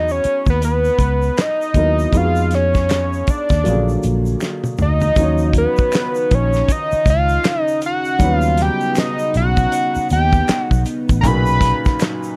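A slow, swung sixteenth-note groove at 79 BPM in 4/4 drives this short neo-soul and R&B cut in Eb minor, setting a sultry, late-night mood. The damped 70s drum kit sits up front and dry, with a fat snare and tight kick alongside hi-hat, handclaps and toms, and a drum fill at 4.4 seconds leads into the second section. Beneath it, a vintage foam-muted fingered electric bass gives a dark, round, punchy low end, while an egg shaker and finger snaps sound distant in a large room in the background. A baby grand piano plays natural, warm accompanying chords through rich harmonies from Emaj9 to Bmaj7, and an analog lead carries the melody with a mellow, detuned, wave-folded tone, a sub octave, fast attack and vibrato. From 5.2 seconds a chorused pulse-width pad adds shimmering, retro sustained chords with a soft attack, and the recording stays close with little reverb.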